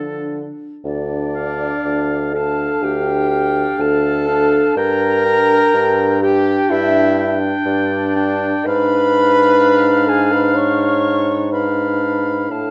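A slow, rubato romantic movement for wind quintet in D minor, at 62 BPM, opens with a dark, up-front bassoon on the bass line, a mellow, distant French horn, and a clarinet held in the background on a single D, while the oboe carries a soft-attacked second line with light vibrato. At 0.9 seconds the pure, silvery concert flute enters with an expressive, crisp-edged melody full of vibrato, giving the music a yearning, elegiac cast as the harmony moves from D minor to G minor and then to a G# diminished seventh. Close, detailed microphones capture the players in a moderate recital-hall reverb, in a fragment cut from a longer piece.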